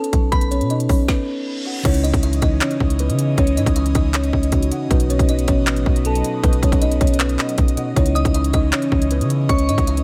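Trap-flavored hip hop at 157 BPM in a half-time feel, this brooding, menacing clip in C# minor opens with a buzzing, woody kalimba melody up front over a trap kit with a hard-clipped kick, woody snare, crisp hats, handclaps and crash, plus a deep, sine-like 808 bass and a brief glassy, crystalline FM bell touched with chorus and tremolo. A stop from 1.1 to 1.8 seconds is filled by an electronic reverse cymbal, after which a mellow tine electric piano settles into the background and an airy, breathy pad with chorus and phaser spreads sustained chords over a C#madd9 to B progression. The warbling bell returns near the end, all set in a digital ambience.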